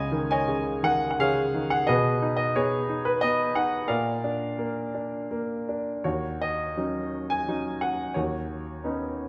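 Brooding and bittersweet, this short excerpt from a longer classical piece centres on a lone grand piano playing lyrically in a three-beat metre with a flexible, rubato feel. The piano sounds clear and present, placed up front, and ranges from deep bass notes in the second octave up to the upper treble. Harmonies drift from a suspended chord through a minor chord and a major chord in the opening span. At 6.1 seconds the music moves into a new passage that settles onto a minor seventh chord and then shifts to an added-ninth sonority. A generous reverb with a two-second decay gives the sound the spacious bloom of a church or concert hall.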